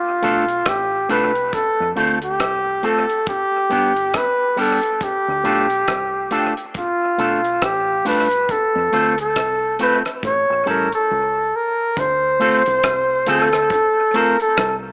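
A close-miked, up-front flugelhorn carries the melody in this laid-back, meditative roots reggae passage cut from a longer piece, its warm tone shaded with vibrato, scooped notes and tape echo. Beneath it, a bright, twangy electric guitar picks clean accompaniment through an envelope filter and tape echo, while a dark, round, foam-muted fingered bass sits low and a cloth-damped, thuddy kit with a tight kick, rim click, hi-hat and analog delay keeps a warm, rolled-off pulse. The drums drop out from 11.1 to 12.0 s, just before the harmony settles onto a Dm7 at 12.0 s, and the whole passage has the spring-reverb glow and small-speaker character of a home cassette recording.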